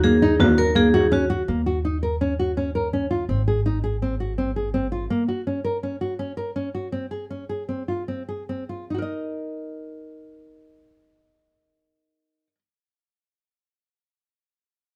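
In a straight 5/4 at 141-167 BPM, this restless, urgent chamber piece in Eb dorian, cut from a longer work, opens with bright, dry hard-mallet vibraphone, a tight classical-style woodwind section in the background and a deep, distant frame drum, all three gone by 1.5 seconds. Fingerpicked nylon-string guitar arpeggios sit up front over woody, growly pizzicato upright bass, moving through Ebm7, Ab, Gb and a rootless Dbmaj7 as the tempo slows from 5.8 seconds before settling on Eb5 with the guitar alone. The production is dark and lightly reverberant.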